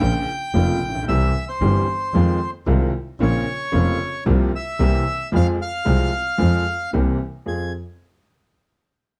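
A dark, lightly reverberant production frames this brief, melancholic and dramatic tango fragment, where a reedy, airy bandoneon carries the rubato melody over a woody, up-front upright piano with long sustain and a single bowed double bass, biting and earthy with light vibrato, as the minor harmony moves through suspended and dominant chords to settle home at 7.5 seconds.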